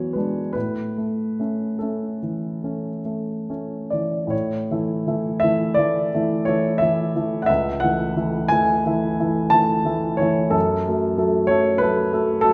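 Mournful and melancholic, this short excerpt of a romantic classical nocturne features a solo grand piano in A major, moving in a slow, rubato 9/8 at roughly 45-65 BPM counted in dotted quarters. The warm grand piano sits up front and carries the whole excerpt alone from 0.0 to 12.5 s, ranging from C#2 up to A5. The harmony opens on an E9 before settling onto A, later shifting to A/C# at 7.5 s and turning toward F# minor at 10.5 s, which deepens the sorrowful shading. A brief opening passage gives way to a longer second section at 4.3 s, and the fragment is cut from a longer piece. The instrument is bathed in a wet recital hall reverb with a 1.4-second decay, and the top end stops at about 10.7 kHz, lending the sound a soft, shadowed glow.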